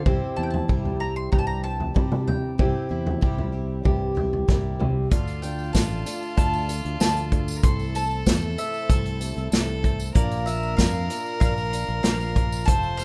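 Hopeful and anthemic, this indie folk excerpt moves at a straight 95 BPM in 4/4 and builds steadily as it goes. A round, double-strung mandolin carries the melody through an analog delay, backed from the start by a dark, up-front fingerpicked archtop guitar, a shimmering, octave-doubled twelve-string guitar with audible finger squeak sitting in the background, a punchy fingered electric bass, and an acoustic drum kit played with bundle sticks, its medium-tuned snare and tight kick sounding roomy yet forward. At 5.1 seconds the archtop drops out and the arrangement fills in: a nasal, reedy fiddle with a gut-string tone takes a second line, a felt-muted upright piano adds mellow, very quiet accompaniment, and a chamber string section bowing sul tasto holds soft, intimate sustained chords. A jingly tambourine joins at 5.3 seconds. The harmony starts on C, then moves through Dm, Am/C and Bb in the second section. 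The mix is a rough home demo with little reverb.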